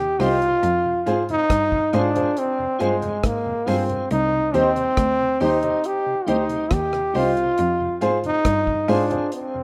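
A rough home demo with a lush hall reverb and studio ambience opens this brief, hypnotic and serious roots reggae cut from a longer piece, moving at 69 BPM in 4/4 over C minor and F minor chords. A clear, up-front trombone carries the solo melody with tape echo, while a bowed cello supplies a rich, smooth bass line with vibrato, and a woody upright piano with long sustain plays stabs. A dry, acoustic drum kit with a tight kick, hi-hat and rim click plays alongside a dark, very quiet fingered electric guitar and a piping tonewheel organ with key click, chorus vibrato, slow rotary speaker and tape echo in the background.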